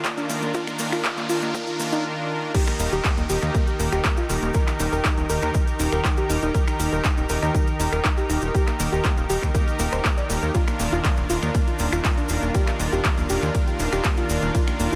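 A straight pulse drives this uplifting, euphoric progressive house excerpt, cut from a longer piece, with an overdriven, punchy electronic kick sitting up front and sounding as if re-recorded in a large room. Around it, an overdriven house kit of crash and ride cymbals, hi-hat, handclaps and finger snaps adds drive, while a grainy, distant egg shaker sits in the background. A short build-up, lifted by a background riser and downlifter, gives way to the drop at 2.5 seconds, and a funky, ring-modulated analog bass with a plucky, decaying attack pumps with sidechain compression from 0.3 seconds onward. Above it, a soft, round, dark pluck spins arpeggios through chorus and tape echo, and a smooth, detuned supersaw punctuates the harmony with stabs. Behind them, a lush, airy, thick unison pad holds bright sustained chords with chorus, all three synth layers breathing with sidechain pumping inside a light digital ambience.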